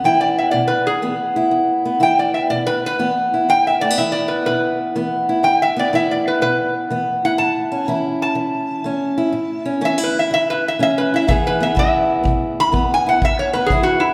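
A swung 4/4 pulse at 123 BPM carries this soulful, laid-back acoustic country blues in E major, cut from a longer piece, where a boxy, up-front fingerpicked parlour steel-string guitar with audible finger squeak moves through E5, A and E beneath a nasal, metallic resonator slide guitar played with a steel bar and fingerpicks, which sings the melody up front from E4 to B5, while a punchy kick drum played with brushes joins at 11.3 s, the performance heard within a wet church reverb.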